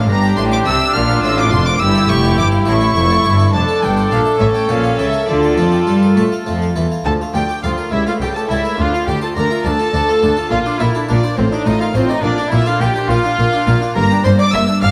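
Gut-strung period violins carry the stormy melody up high, with a second violin section tracing its own line just beneath, their bowed tone lightly vibrated and faintly reedy. This is a dramatic, baroque-style concerto movement in D minor, cut from a longer piece and moving at 69 beats per minute in dotted quarters through a straight 6/8. A close-miked, brilliant Flemish-style harpsichord plucks out the accompaniment across a broad range, its octave strings sounding full and dry against the strings. A smooth-topped viola section fills the middle, while a rich cello section sits in the background and a double bass section anchors the low end. The harmony turns from Gm and A7 toward Dm, then brightens through Bb and F7/A before landing back on Gm at 14.0 seconds. Close, detailed microphones capture the ensemble inside a moderate concert hall whose 2.1-second reverb lends the chamber sound a sense of space.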